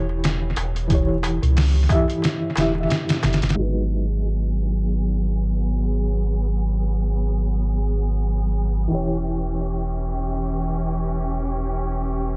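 Trip hop in G# minor at 90 BPM, this melancholic, smoky excerpt moves in 4/4 with a lazy sixteenth-note swing and a slightly flat tuning. A felt-muted upright piano plays soft, dark accompaniment throughout, its short-sustained notes colored by tremolo and tape echo, while a round sine sub bass sits up front beneath it. For the first 3.6 seconds, a pitched-down, sampler-style drum kit with a thumpy kick, medium-tuned snare and hi-hat drives the groove through analog delay, with a crisp, saturated metal-shell darbuka in the background. At 3.6 seconds the drums and darbuka drop away and a lush, bowed symphonic string section enters with sustained chords full of vibrato, a filter sweep running across them to the end. The harmony shifts from Em6 to G#m7 and back to Em6 at 8.9 seconds. The dry, echo-heavy mix carries vinyl crackle and a low-pass filter that keeps the whole sound hazy and muffled.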